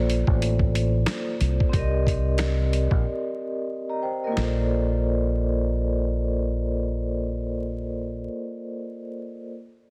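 Confident and soulful, this boom-bap hip-hop piece is cut from a longer track and moves in 4/4 with a light swing on the sixteenths. A vintage, band-limited vibraphone struck with medium mallets carries the accompaniment, its metallic, ringing tone shaded by a slow motor vibrato and filtered at both ends. Beneath it, a deep dub fingered electric bass sits up front with a dark, round, direct-amped sound. The sampler-style kit of thumpy kick, medium-tuned snare and hi-hat sounds gritty, pitched down and tape-warm, and it drops out at 4.5 seconds. The harmony moves from Bbmaj7 to Cm7 and back to Bbmaj7; the bass stops at 8.3 seconds and the vibraphone rings on until 9.5. Studio reverb, a heavily compressed radio sound and vinyl crackle give the whole recording a worn, lo-fi character.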